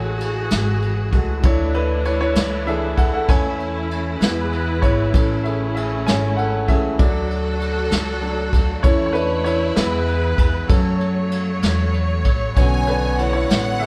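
Swaying in 6/8 at 65 BPM, this romantic pop ballad in A major rolls forward on a vintage brush kit with dark cymbals and a punchy kick, entering at 0.2 seconds under a woody pizzicato upright bass. A polished, up-front grand piano carries a solo through changes from F#madd9/A and Dsus2 to A/E, E and F#m, cushioned by lush, bowed symphonic strings holding sustained chords. At 12.6 seconds, as the harmony turns to Bmadd9, a focused violin section adds a high second line, all in light reverb with a live-room feel, cut from a longer piece.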